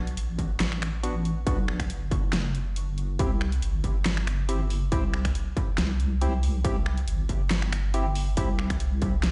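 Deep dubstep at 139 BPM in 4/4 with a half-time feel and a light swing on the sixteenths, this dark, heavy excerpt moves from B minor to C major at 3.2 seconds. A deep, soft wobble bass sits up front from the very start, its triangle and sine tones compressed and thickened with chorus and tube saturation, holding sustained notes low in the register. The drums bring a huge snare, bright hi-hats and finger snaps, tape-tinged and layered, while a separate electronic kick adds a distorted punch from 0.4 seconds. A hollow, organ-like percussive stab enters at 1.0 seconds, its decaying notes colored by ring modulation, a noise layer, analog chorus and dub echo. The whole mix sounds as if played on a big sound system in a bare stone room, with a dusky top end and stone room reverb.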